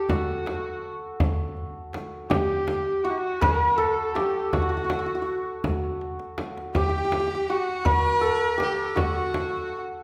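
A passionate Persian modal ensemble excerpt in a slow 6/8 at 54 BPM, led by an up-front, shimmering hammered santur, with a distant, biting, earthy kamancheh gliding in portamento behind it, a deep tombak played with hard hands and a close, dry frame drum beneath, a drum fill at 6.0 seconds, and a rich violin with airy bow and light vibrato joining at 6.8 seconds, heard in the lingering reverb of a recital hall.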